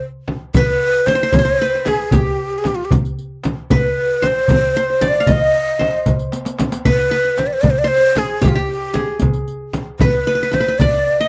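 Soulful and longing, this short cut from a longer Arabic maqam ensemble piece moves in a straight 6/8, led by a breathy, up-front ney whose reed-cane tone carries vibrato, tongued attacks and an unsteady, lifted edge, while a plectrum-plucked qanun with bright-edged triple strings and a slapback echo plays a second line. The percussion pairs a deep, large frame drum struck with hard hands close and up front, a crisp metal-shell darbuka with a live-room sound, and a riq whose bright jingles are played with soft hands, close and dry, with a drum fill at 6.3 seconds. The whole has the dry, close feel of a 1970s-style studio recording with light reverb.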